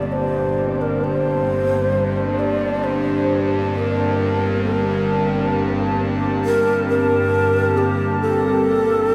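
A breathy bamboo shakuhachi leads this dark, unsettling ambient drone in G minor, carrying an up-front melody between G4 and D5 with vibrato and tongued notes, trailed by shimmer reverb and tape echo. Beneath it, a bright, tense, string-like drone sits low from G1 to G2, its detuned sawtooth layers and noise giving it a bowed quality. A deep, moody analog pad holds a sustained Gmadd9 chord with slow attack and long release, colored by chorus, phaser and shimmer reverb. Very quiet gamelan-type bossed gongs play soft, round arpeggios on G2 until 4.4 seconds, while a metallic bronze singing bowl rings faintly on G4 with slow beating throughout. At a slow 66 BPM in 4/4, this short cut from a longer piece is soaked in a cathedral reverb with a 5.5-second decay, giving it a dreamy, cavernous feel.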